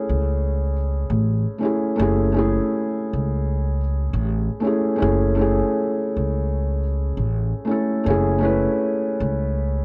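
A soft, intimate felt-muted upright piano with audible action noise sits up front on an F#m7 chord through a low-pass filter and plate reverb, joined at 0.1 seconds by a woody, thumpy pizzicato upright bass on gut strings in this reflective, melancholic lo-fi hip hop fragment in F# minor at 79 BPM with a swung 16th-note feel, all bathed in wet studio reverb and cassette tape character.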